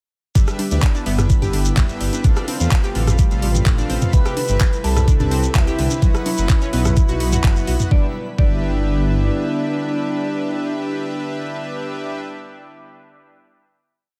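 A four-on-the-floor electronic kick, knocking and overdriven up front, drives this euphoric, expansive progressive house piece at 127 BPM in G major. It is joined by programmed hats, claps and rim clicks, a grainy hand-played shekere in sixteenths, a tape-warm tribal loop of congas and toms in the background, and a dark, rumbling detuned saw bass in a dotted rhythm, with the hats, percussion and bass pumping through the drop until it ends near 7.9 seconds. Over it, an airy, breathy pad holds chords while a round analog pluck runs a 12-step sequence drifting against the bar and a smooth supersaw adds dotted-rhythm stabs with dub echo, as a faint twinkling granular shimmer hangs above. At 4.1 seconds an expressive, resonant synth lead enters with vibrato and a repeating riff, doubled an octave higher by a very quiet, pure FM bell, carrying through the final G6 chord to 12.2 seconds in a digital ambience.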